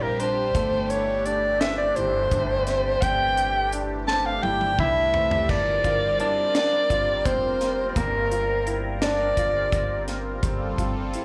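Progressive instrumental band music in a straight 7/8 at 170 BPM in G dorian, intricate and driving, where a breathy, whispered soprano saxophone solos up front with vibrato over a swirling, detuned analog pad with phaser and chorus, background grand piano arpeggios with slapback and tape echo, a woody, thumpy pizzicato upright bass and a dry reggae kit with dark cymbals, a high-tuned snare and a drum fill from 4.1 to 5.5 seconds, before a ringing fingerpicked Celtic harp adds a second line at 4.8 seconds, all heard through a club PA with light reverb.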